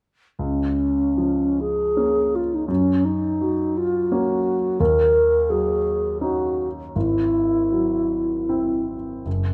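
In a gently flexible rubato triple metre, this dreamy, pastoral impressionist classical excerpt pairs a wooden-headed alto flute, pure and softly attacked with vibrato, carrying the melody from 0.4 seconds until 8.8 seconds. A clear concert grand piano accompanies from beneath, its deep bass and short, natural sustain ringing on alone until 9.5 seconds. Both instruments sit up front in a close, detailed recording with light reverb.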